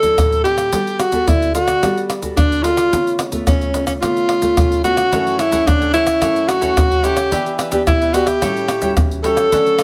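Playful and sunny, this short passage cut from a longer piece blends samba and choro in a straight 4/4 feel. A breathy alto saxophone carries the melody up front in a jazz-style solo, its bright subtone colored by vibrato and scooped notes. Beneath it, a nylon-string guitar is fingerpicked in a classical manner, with finger squeak, moving through rich chords such as D9, Gmaj9 and C#aug7. Close, dry percussion of egg shaker, tight surdo, pandeiro and tamborim sits prominently in the mix throughout. At 5.1 seconds a crisp, warm cavaquinho enters, adding picked accompaniment as the harmony turns to F#m7, Em7 and A6, all within a light reverb.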